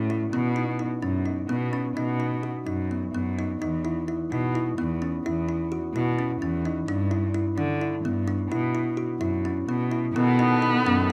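A woody, ringing kalimba carries restless arpeggios through this shimmering excerpt of contemporary chamber music in 7/8 at 257 BPM (eighths) in B mixolydian, while a biting, bowed cello with vibrato holds the bass up front as the chords move from B through E5, G6 and Bsus4 to B7. At 10.1 s an intimate, airy sul tasto viola joins on a second line alongside reedy, breathing harmonium chords set in the background, and at 10.5 s a bell-like celesta adds a very quiet, delicate touch. The sound is close and detailed with little reverb.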